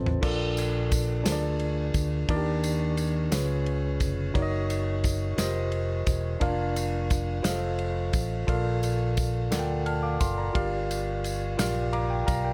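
Hopeful and uplifting, this slow gospel excerpt in a straight 6/8 rides a clean tine electric piano bathed in plate reverb, its chords moving from Bbmaj7 through Ebmaj7, Db7 and Gb6 before settling back home, with a piano fill closing things out at 11.6 seconds. A dark, round fingered electric bass sits up front beneath a tight soul drum kit with dark cymbals and a rolled-off top, which opens with a fill, while a jingly tambourine joins at 0.6 seconds. The whole sits in a small room with light reverb.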